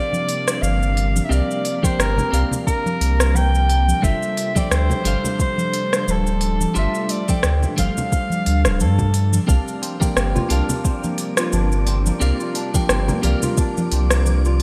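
Swung sixteenths ride over a relaxed 4/4 pulse in this sunny sunset chillout excerpt. A smooth R&B drum kit with cabasa, smooth hi-hat and rim click sits alongside bright, close congas in the background and a soft, tape-tinged electronic kick, while a deep, round sub bass sits up front. A clean, scooped electric guitar, softened by a low-pass filter and tape echo, accompanies an ethereal, warbling pad whose detuned, vintage chords drift through ensemble chorus and reverb, moving between suspended ninth chords. A punchy, roomy soprano saxophone with light vibrato carries the melody through tape echo until 9.4 seconds. A ringing, fingerpicked concert harp then takes up arpeggios at 9.5 seconds, and a breathy, wind-like noise texture slips in quietly behind it at 9.9 seconds. The mix has the rough, lightly reverberant feel of a home demo.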